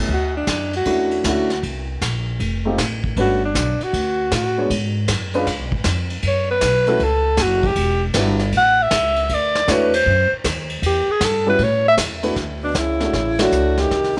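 Relaxed and sophisticated, this short cut from a longer small-group swing and bop performance moves at 156 BPM in 4/4 with a swung feel, centered in D major. The alto saxophone carries the melody as a solo from 0.1 to 12.4 seconds, its tone smooth on top with vibrato and sitting up front in the mix. Underneath, a dark, mellow upright piano comps through harmonies that range from Dmaj9 through Gmaj9#11, G#m7b5 and C#7, while a pizzicato upright bass with a woody, thumpy character anchors the low end. A vintage drum kit played with brushes adds dark cymbals, a punchy kick and a rolled-off top, with a band accent landing at 13.3 seconds. A growling, raspy trombone slips in quietly in the background at 12.6 seconds as the music turns to a new section, all set in light studio reverb.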